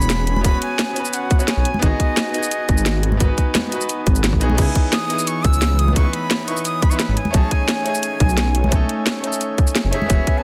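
Light reverb and a dense, heavily limited modern master frame this lush, warm liquid drum and bass excerpt at 174 BPM, where a breathy, chiffy jazz flute with vibrato carries the melody through digital delay over a brilliant grand piano with audible action noise and dub echo, an airy chorused pad in the background, a menacing, saturated detuned saw bass with a filter swell, an overdriven kit with a cracking snare and bright hats, a tight electronic kick and acoustic congas entering at 0.4 s, all moving through E69, G#m7, C#m9 and B13.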